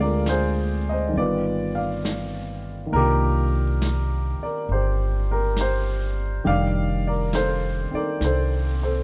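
An upright piano with a woody tone and long sustain sits up front, laying down chords over a slow, swung jazz ballad with an intimate, late-night mood. Beside it, a growly pizzicato upright bass on steel strings holds the low end from the very start, also placed close to the listener. At 0.3 seconds a brush drum kit joins, softer in the mix, with a medium-tuned snare and hi-hat that sound as if they're in a small room. The harmony moves from a half-diminished chord through an altered dominant to a minor eleventh, settling on a rich thirteenth chord near the close. Light reverb and a dark, warm production give this short cut from a longer piece a hushed, after-hours glow.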